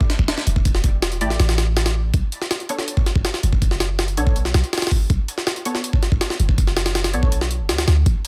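A gritty, sampler-style jungle drum kit sits up front in this short cut from a longer drum and bass track, its compressed, pitched-up hits pairing a thumpy kick with a high-tuned snare and hi-hat in a straight 4/4 feel. Underneath, an 808-style bass enters at 0.2 seconds, deep and boomy with a sine body, a noise layer, a fast attack and a dark, decaying tail. Muted dub chord stabs float further back, their sawtooth tone shaped by a filter pluck with a short decay and given a mellow sheen by ensemble chorus and dub echo. The harmony moves from A7sus4 to Bm9 at 2.1 seconds, lending an atmospheric color to the frenetic energy. The mix is dense and heavily limited in a modern style, set in a digital ambience with a layer of vinyl crackle.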